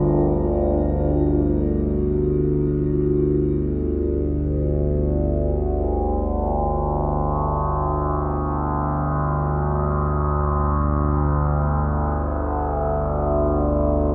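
Dark ambient drone in free time, this desolate, dark passage is cut from a longer piece. A deep, moody pad in sustained chords, detuned with a sub octave and bathed in chorus and shimmer reverb, opens the music alongside the drone but stops at 1.1 s. From there the overtone-sweeping drone carries on up front through to 14.1 s, its resonant, ring-modulated tone letting overtones shift and move on a low, slow-attack sustain. Alongside it, a bronze singing bowl struck with a suede striker rings very quietly throughout, metallic and smooth with slow beating. A wet spring reverb surrounds the sound, lending a lingering tail to the bleak atmosphere.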